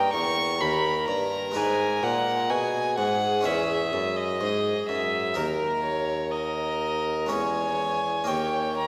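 In a straight 4/4 at 63 BPM, this serene, flowing excerpt of a baroque-style sonata movement with continuo sets two period-style gut-string violins, one carrying the melody with an airy, nasal bow and the other a higher second line placed up front, over a bright, plucked Italian-style harpsichord and a bassoon bass with light vibrato. All four parts play throughout the 8.9 seconds, moving through D#7, G#m, C#m/E and D#5, then back to C#m/E before returning to D#7. The close, reedy strings and solo bassoon sit in a wet concert hall reverb with a 2.3-second decay.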